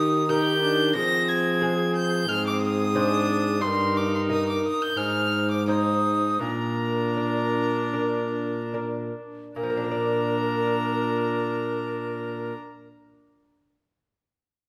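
A festive, courtly renaissance-style consort dance in Bb mixolydian at 71-90 BPM, cut from a longer piece, where a hollow, chiffy alto recorder carries the melody over a close, nasal gut-string violin second line, a bright fingerpicked lute with double strings in the background, a smooth bowed viola and an up-front dark trombone bass, all in a moderate recital hall, with the tempo slowing from 2.3 to 9.6 seconds before a new section begins.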